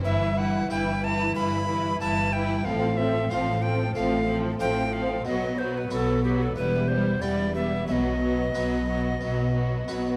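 A wet recital-hall reverb surrounds this driving, dramatic excerpt from a baroque-style concerto movement with solo episodes, set in a straight 4/4. An airy, up-front tenor recorder with a crisp, chiffy attack carries the melody over a smooth violin section in the background, while a dark, woody violin section adds a second line and a rich viola section with expressive portamento fills in the accompaniment. A brilliant French-style harpsichord sits further back, and a soft-attack cello section and a warm, even double bass section anchor the bass.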